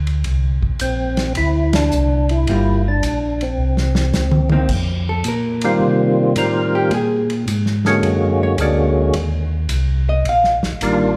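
A swung 4/4 groove sets up this greasy, soulful soul jazz organ trio excerpt, with a smooth-sounding acoustic kit on hi-hat, ride, crash, toms, a medium-tuned snare and a tight kick. A mellow, round tonewheel organ handles the bass line up front, lightly overdriven and colored by chorus vibrato and a slow rotary speaker. Above it, a second tonewheel organ carries the melody with a fat, clean tone, third-harmonic percussion and key click, also turning through a slow rotary with chorus vibrato. After a band accent and a drum fill at 3.6 seconds, a picked, dark-toned hollow-body electric guitar takes a solo from 4.7 seconds as the chords move through F7sus4, Bb7alt and Ebmaj9. A moderate concert-hall reverb gives the trio a sense of space.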